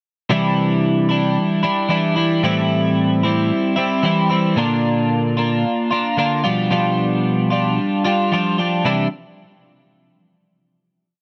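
This rock piece has a wistful, jangly mood. It moves at 112 BPM in a straight 4/4 and sits in C major, tuned slightly sharp at A4 = 441 Hz. A lone twelve-string electric guitar carries it from 0.3 to 9.1 seconds, playing clean, compressed, picked and strummed chords between A2 and F4, with a subtle chorus that adds shimmer. The short verse moves through Cadd9, Am7, Bb and G7/B before settling on a final Cadd9 at 8.9 seconds. The dry, close sound recalls a 1970s studio, with the guitar placed up front and little reverb around it.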